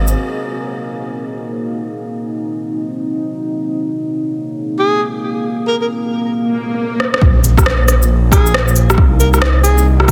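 Future garage with a ghostly, nocturnal mood opens on a deep, dark ambient pad of detuned sawtooth chords with chorus, reverb, sidechain pumping and a filter sweep. A breathy, whispered alto saxophone enters at 4.8 seconds, close-miked and intimate with light vibrato and tape echo, while a background electronic swell leads into an impact at 7.2 seconds. Shaker, rim click and cabasa, re-recorded in a large room, play a drum fill at 7.0 seconds, and the impact then brings in a punchy, overdriven layered kick and a menacing, saturated detuned saw bass that pumps against the sidechain, all heard through a dense, heavily limited modern master.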